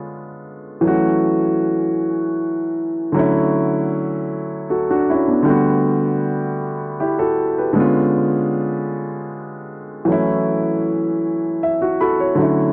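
Sultry and late-night, this short R&B excerpt from a longer piece sways in a slow 6/8 with a solo concert grand piano, its tone warm and rich in deep bass, set up front in a dry, close 1970s-style studio sound with light reverb. The harmony moves through lush chords such as C#7b9, F#m7, Dmaj9 and Gmaj9, with the piano spanning D3 to B5. A piano fill arrives at 11.2 seconds, just before the passage ends at 12.7 seconds.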